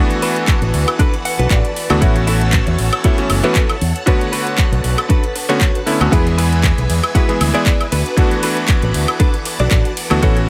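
A groovy, feel-good nu-disco excerpt at 117 BPM with a light 16th-note swing opens on a bright, clangy electric grand piano and a clean, compressed electric guitar riff with analog chorus, gritty 12-bit sampler character and dub echo, over lush, soft-attack string-machine chords in the background; a house kit of handclaps, metallic hi-hat, ride cymbal and woodblock arrives in small room ambience, a punchy, up-front electronic kick enters at 0.5 seconds and an envelope-filtered fingered bass at 0.6 seconds, the guitar adds a fill at 1.0 seconds, and the harmony moves through D6, A6, Bm7 and E while sidechain pumping breathes through the piano and strings.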